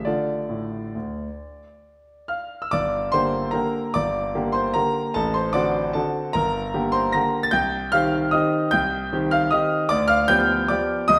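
A clear concert grand piano carries this bittersweet, wistful classical waltz entirely on its own, sitting up front in the sound with an open tone and a deep bass. It moves in 3/4 with a rubato feel, its tempo drifting between 131 and 158 BPM. The music is in G minor, tuned to A4 = 441 Hz, and the piano spans a broad range from G1 to Bb6. After a brief opening on D minor, a new section begins at 2.7 seconds on G minor, passing through D7/A, back to G minor, then C minor before settling on G7/D at 9.9 seconds. A wet stone room reverb with an RT60 of 1.4 s surrounds the instrument, and this short passage is cut from a longer piece.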